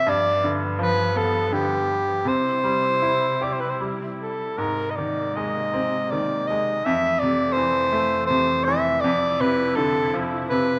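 A mellow soprano saxophone carries the melody from the first moment, its smooth top and classical phrasing sitting up front over a bright, woody upright piano and a veiled, muted string section in this tender, pastoral Celtic slow air. Cut from a longer piece, it moves in a free, rubato three-beat lilt, the saxophone singing as the solo lead voice while the piano gives polished, present accompaniment with short-sustained notes. Farther back, the bowed strings play con sordino, holding dark, distant chords with vibrato beneath the other two. The harmony drifts from G7 to C, then shifts at 4.6 seconds to an Abadd9 as a second phrase begins, settling through Fmaj7 toward Dm7/F. A moderate scoring-stage reverb gives the whole ensemble a spacious, softly glowing room.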